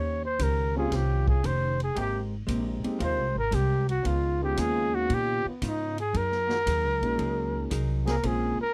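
A swung eighth-note feel in four drives this energetic, joyful slice of big band swing, cut from a longer piece. A breathy, mellow trumpet takes the solo up front, its soft attack, smooth top and vibrato carrying the melody. Beneath it, a woody pizzicato upright bass with steel strings sits prominently, and a swinging acoustic drum kit joins at 0.4 seconds with hi-hat, ride cymbal, a medium-tuned snare and a punchy kick. A clear, close-miked trombone section arrives at 0.7 seconds with sustained chords in the background, lightly touched with vibrato. A warm baby grand piano with long sustain enters at 0.8 seconds, while a clean, compressed hollow-body electric guitar picks its accompaniment quietly in the background over a progression moving from Eb13 through Abmaj9, Db9 and Gb69 to Bbm9. The sound is a dry, close 1970s-style studio recording with light reverb.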